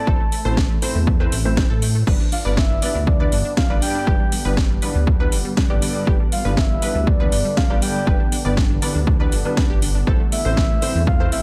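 A light reverb gives this short cut from a longer progressive house track a polished, roomy sheen, with an overdriven electronic kick drum sitting up front, punchy and re-recorded in a large room. The mood is emotional yet driving, moving at 120 BPM in a straight 4/4, tuned to A4 = 439 Hz, and the harmony rests on A minor before shifting to G at 2.1 seconds and returning to A minor near the end. A soft, round octave-layered synth lead carries the melody with chorus, tremolo, vibrato and tape echo, while a lush, detuned unison pluck plays arpeggios in the background, roughened by vintage 12-bit sampler grit and pumping with the sidechain. A felt-muted upright piano adds mellow, intimate stabs with short sustain and tape echo, and a dark, rumbling detuned saw bass underpins it all with a saturated, beating low end. A house drum kit supplies a cracking snare, metallic hats and crash cymbal with a tape-warm tone, and from 3.4 seconds a shimmering, ethereal pad enters with slow-attack sustained chords, granular texture and built-in reverb.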